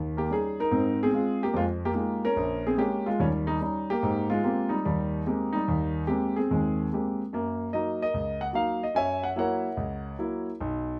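A concert grand piano carries this solo jazz fragment on its own, sitting up front with an intimate, natural tone and a deep bass register. The mood is relaxed and swinging, with the eighth notes in a lilting swing feel over a steady four-beat metre. The piano spans from the low bass up into the upper middle of the keyboard, and the soft clatter of its action is audible beneath the notes. The opening passage moves through a turnaround of dominant and minor-seventh colours before settling on a rich major-ninth chord at 4.0 seconds. At 7.3 seconds the harmony shifts to a new section built on Gb6 and Gb7 chords, and the recording, cut from a longer piece, stops at 11.0 seconds. A light reverb gives the close, warm sound a little air.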